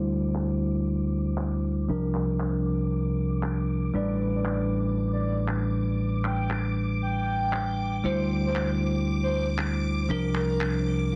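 Deep house in a warm, moody vein, cut from a longer piece, where a bell-like tine electric piano plays filtered, delayed stabs over sus chords and a growly, up-front fingered bass, a shimmering vintage string-machine violin texture hangs high behind, overdriven electronic handclaps enter at 0.4 seconds with a swung sixteenth-note feel, and a breathy, warbling flute-like synth lead carries the melody from 3.9 seconds, all under light reverb and a dense, heavily limited master.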